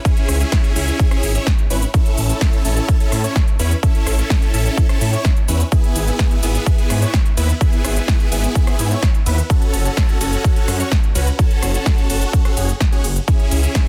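A huge, euphoric supersaw riff with sidechain pumping and dub echo opens this anthemic festival progressive house excerpt at 127 BPM alongside a punchy, up-front electronic kick and an overdriven big-room kit of crisp hats, ride, rim click, shaker and snare, before a thick, chorused detuned saw bass pumps in at 0.3 s beneath a C#m, A, E/G#, F#m progression, all in a dense, heavily limited modern master tuned to A4 = 438 Hz.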